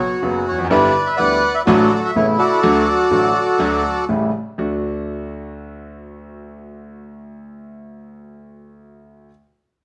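Recorded live in a stone room with its wet reverb, this passionate, nostalgic rubato tango fragment sets a reedy, dark, full, close-miked and dry bandoneon melody up front until 4.0 s, over a clear, natural concert grand piano accompaniment with deep bass that plays on until 9.3 s.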